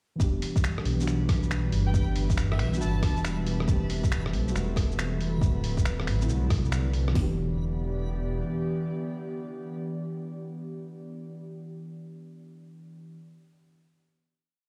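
A rainy, nocturnal future garage piece in E minor at 138 BPM, swung at 65% on the sixteenths, opens at 0.2 s with two drum kits, a bass, a pad and synth keys sounding together over Em7, Am7/E and D7. The front kit is overdriven, with a punchy snare, metallic hats and a muffled two-step kick. Beneath it sits a quieter, pitched-down, tape-soft sampler kit of shaker, finger snaps, rim clicks and half-open hi-hat in a skittering shuffle. A dark, detuned saw bass rumbles up front in long gliding notes, pumping with the sidechain along with the muted, felt-like keys and the breathy pad. The keys play held chords with syncopated pushes through chorus and delay, while the pad's slowly shifting chords carry a vintage 12-bit grit. At 0.9 s a reversed, granular texture begins holding a high note far in the background, and at 1.9 s a bright, dreamy lead adds short vibrato phrases. The drums then fall away, and the keys and pad, with the bass still beneath them, settle on a final Em7 at 7.2 s, all set in the echo of a stone room heard through a big sound system.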